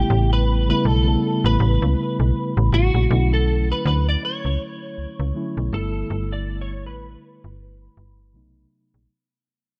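The recording has a dark, warm production set in digital ambience, with a late-night, longing mood drawn from a longer contemporary R&B piece in a swung 4/4. A slap-like FM bass sits up front with a snappy, metallic attack that decays, anchoring the low register throughout. A mellow tine electric piano, heard as if through its built-in speakers and softened by a low-pass filter, supplies clean accompaniment beneath a picked, compressed electric guitar melody coloured by ensemble chorus, filtering and tape echo. The harmony moves through A9, Bm11, G69 and B7b9, and from 3.1 seconds the second section brings a filter sweep and a fade-out. The guitar drops away at 8.7 seconds, leaving the keys and bass to close the passage.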